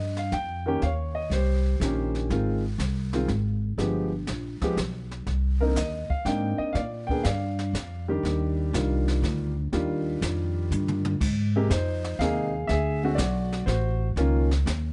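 A smooth, vintage-toned upright piano carries the melody with long sustain and plate reverb, alongside a woody, growly pizzicato upright bass, both sitting up front in this swinging jazz piano trio in 3/4 at 121 BPM in Eb major. A brush drum kit enters at 0.2 s in an airy studio room, with dark cymbals, a high-tuned snare and a boomy kick. A drum fill at 10.7 s leads into a new section at 11.2 s, where the harmony moves through Abadd9, D7#11 and Db69, giving this warm passage, cut from a longer piece, a fresh turn.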